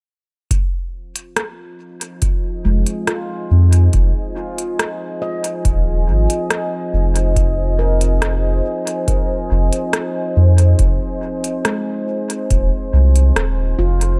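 A hazy, deep stretch of ambient dub in F minor, moving at 70 BPM in a straight 4/4 and resting on a single Fm7 chord, cut from a longer piece. An overdriven analog kick and an organic electronic kit with crisp hi-hats and rim clicks set the pulse from 0.5 seconds, the kit's hits trailing into dub echo while the kick stops at 12.7 seconds. A dark, warbling pad of detuned sawtooth and sine voices swells in on a slow attack at 1.6 seconds, sustaining chords under chorus and its own reverb. At 2.6 seconds a mellow handpan adds ringing arpeggios played with soft fingertips and washed in tape echo. A round, soft sub bass sits up front, its fast attack giving the low end a firm, sustained anchor beneath the digital ambience.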